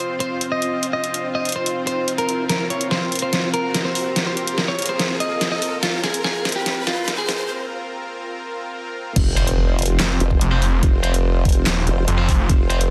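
A chorused, wobbling formant-sweep bass crashes in at 9.2 seconds with a knocking, overdriven electronic kick, joined moments later by bright high-gain guitar stabs trailing dub echo and then, at 10 seconds, a growling, detuned saw bass, launching the drop of this chaotic, aggressive half-time heavy wobble dubstep at 144 BPM, after a build-up carried by a clean, scooped electric guitar melody with its own echo, a lush, airy supersaw pad pumping under sidechain, a background riser and impact, and a deep-snared, driven dubstep drum kit with crash cymbal, handclaps and hi-hat, with the guitar melody ending at 7.5 seconds.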